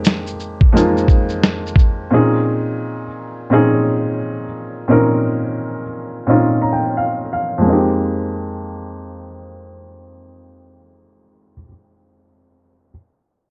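Melancholic and reflective, this lo-fi hip hop excerpt sets a woody, intimate upright piano with audible action noise and cassette-tape softening over minor eleventh chords, joined for the first 2.0 seconds by a gritty, sampler-style drum kit with a thumpy kick, snare, hi-hat and shaker, all wrapped in a dark production with a filter sweep through the opening 7.6 seconds.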